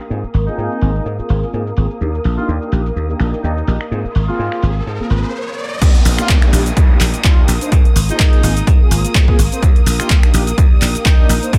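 A dry, close-sounding slice of filtered disco house with a joyful, sunny mood, where a growly, foam-muted thumbed slap bass sits up front over an overdriven analog drum machine of handclaps, finger snaps, cabasa, hi-hat and crash cymbal, all pumping and muffled under a low-pass filter. Round, detuned sawtooth synth brass with chorus and phaser, lush bowed strings set distant in the background, and a mellow jazz-style horn section carrying a narrow melody all breathe with the same sidechain pump and filtering as a filter sweep runs through the opening. A riser enters at 4.0 seconds, a short break follows at 5.3 seconds, and at 5.8 seconds a punchy, overdriven electronic kick drops in as the groove cycles between Ab69 and Ebmaj7 chords, with a downlifter among the electronic effects.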